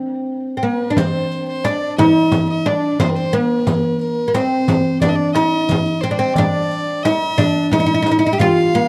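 A woody, fretless oud leads this stately Arabic maqam ensemble piece in C maqam rast at 89 BPM in a straight 4/4. It is plectrum-plucked on double strings, sits up front and carries tape echo. A pure, floating bowed violin joins at 0.6 s with a soft-attack sul tasto second line, and at 1.0 s the percussion enters: a crisp metal-shell darbuka, a compressed, saturated frame drum played with hard hands, and a very quiet, distant riq with bright jingles. The dry, close 1970s-style studio sound has light reverb and small room ambience, and this short section is cut from a longer piece.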